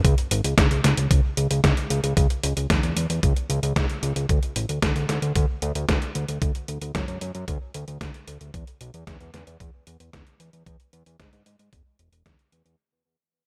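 A fat, sawtooth-edged analog bass and a detuned 8-bit drum machine open this short italo disco passage together at 113 BPM in a straight 4/4, carrying a nostalgic, bittersweet mood. The bass is thick and nasal, with a detuned, saturated character, a fast attack and sustained notes that keep evolving while it moves between E1 and G#2 through a tape echo. Overdrive gives the drum machine's hi-hat and fat snare a grainy, sampler-style bite, and they sound as if re-recorded in a small room. An electronic kick drum sits up front alongside them, gritty, thumpy and compressed at its natural pitch, and it drops out at 12.4 seconds, just before the other parts finish at 12.8 seconds. A light reverb surrounds the mix, and the whole passage plays as a single section under a fade-out, cut from a longer piece.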